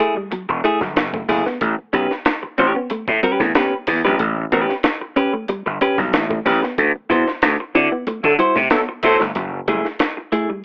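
Funk at 93 BPM with a strutting mood, this passage cut from a longer piece sets a twangy, picked clean electric guitar up front over F#m9, A9 and D9 chords, with a dark, fingered guitar riff in the background, a compressed sampler-style breakbeat kit with thumpy kick and high-tuned snare, very quiet close congas and a growly overdriven slap bass, while a mellow horn section with light vibrato joins from 8.2 to 9.2 seconds inside a band accent that begins at 6.8 seconds, the whole mix filtered like a telephone line with light reverb.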